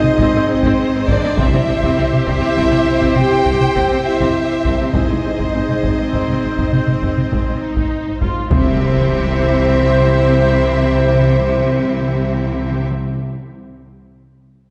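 This cinematic, epic orchestral film score excerpt moves at a stately 67 BPM in 12/8, in C major, with a triumphant, heroic mood. A lush violin section carries the melody with vibrato and a focused, smooth top, while a second violin line, soft in attack and expressive, plays alongside it. A clear viola section sits in the background with accompaniment, and a distant, roomy woodwind section holds sustained chords alongside the dark, tight French horns, which are the most prominent voice in the blend. Rich cellos and double basses, smooth and even, anchor the harmony as it shifts between Ab and C. A taiko ensemble struck with heavy sticks drives the opening until 8.8 seconds, and very quiet hard-mallet timpani on calf heads strike briefly near 1.4 seconds before returning at 8.5 seconds alongside a huge, dark but very quiet impact. A reverberant concert hall places the orchestra well back in the room, giving the sound a spacious, softened top end.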